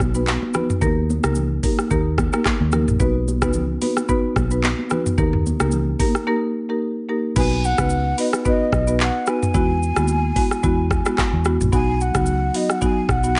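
A softly reverberant mix with rounded-off highs carries this hypnotic, smooth afrobeats excerpt, cut from a longer piece and lightly swung. An electronic afro-pop kit with a knocking kick, metallic hats, handclaps, rim clicks, shaker, toms and crash sits up front beside a woody marimba, while a dark, foam-muted electric bass holds the low end and bright, high-tuned congas sit in the background until 6.1 seconds, with a barely audible electronic impact near the start. After a short break, a breathy, hollow jazz flute with vibrato and tape echo enters distantly at 7.4 seconds to carry the melody.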